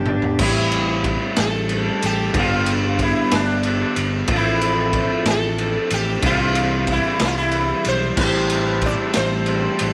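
Light studio reverb frames this short, mysterious psychedelic rock clip, cut from a longer piece, in A minor at a slow 62 BPM with a straight 6/8 feel. A raw garage drum kit sits up front, gritty and saturated with a punchy kick, a medium-tuned snare and a pumping small-room sound, opening with a fill and playing crash, ride, kick, snare and toms. An electric guitar through a small old amp plays a slightly broken-up, compressed, lo-fi riff colored by a rotary speaker, while a round, amped fingered bass anchors the low end. From 0.4 seconds a bright, buzzing sitar carries the melody, its sympathetic strings shimmering through a slapback echo over a dark progression of Am7, G, F/A and C. A reedy, breathing pedal harmonium sounds sustained chords in the background at the very start and again from 8.2 seconds as the harmony returns to Am7.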